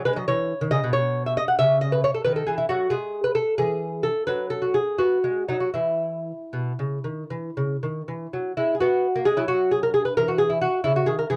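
Set in 12/8 with free, rubato timing, this brief cut from a longer baroque-style classical dance features a solo fingerpicked lute whose delicate nylon double strings, some doubled at the octave, sit up front against a moderate booth ambience heard from further back, leaving a radiant, serene mood.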